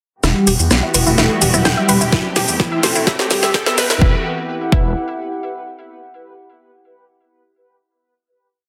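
Melodic techno at 127 BPM in E minor, dark and hypnotic, this short piece is a single build from 0.2 seconds that settles onto a final Emadd9 chord at 4.0 seconds, with a drum fill and filter sweeps on the pluck, brass and strings running through the build. A gritty, saturated sawtooth bass drives sequenced sixteenths beneath a brassy, full-bodied synth brass riff in octaves, a bright, detuned analog pluck step sequence with tape echo, and distant, smooth bowed strings holding sustained chords, each pumping against the punchy four-on-the-floor electronic kick that arrives at 2.1 seconds. Up front, the programmed house kit adds a cracking snare, metallic hats, rim and shaker, while a very quiet riser marks the transition and a warbling, lo-fi pad lingers in the background, all set in moderate digital room reverb within a dense, heavily limited master.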